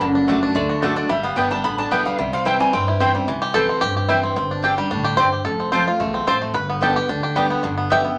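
Bluegrass at a lively, rustic 220 BPM in C major, cut from a longer piece, where a nasal, metallic lap resonator guitar with slide takes a steel-bar solo until 3.2 seconds before the twangy, up-front five-string banjo, played with fingerpicks, takes over the solo from 3.3 seconds, over a bright, full-bodied dreadnought acoustic guitar, a double-strung mandolin playing stabs, and a thumpy gut-string upright bass, all in a wet small room.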